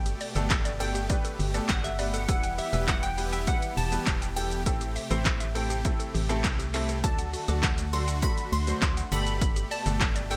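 A glassy, crystalline wavetable pluck carries the melody from the start, its detuned, ring-modulated tone shaped by a moving notch filter sweep and trailed by chorus and digital delay. This energetic, confident dance-pop excerpt moves at 101 BPM in a straight 4/4, cycling through Gadd9, Em, Am7 and D before returning to Gadd9 at 9.1 seconds. A punchy analog drum machine enters at 0.1 seconds, dry and up front, with kick, snare, handclaps, hi-hat and shaker wrapped in gated reverb, while a hollow, organ-like FM bass sits just as forward with fast, decaying notes. A clear, polished baby grand piano plays accompaniment with short sustain, analog chorus and sidechain pumping. Huge, lush supersaw chords and a woody, mallet-like FM pluck playing arpeggios sit in the background, both pumping with sidechain compression, with the pluck also carrying chorus and delay. The whole mix has a bright 1980s-style digital sheen and a light reverb.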